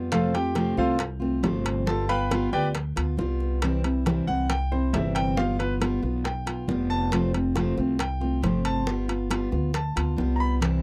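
A straight 4/4 pulse at 137 BPM drives this relaxed, danceable Cuban son and guajira excerpt, where a dark, full-bodied fingerpicked steel-string guitar and a woody, thumpy gut-string upright bass sit up front beneath a clear, polished concert grand piano soloing in short-sustained arpeggios over F, G7 and C, while tight, high-tuned bongos and ringing metal-shell timbales add percussion in a dry, close 1970s-style studio sound with light reverb.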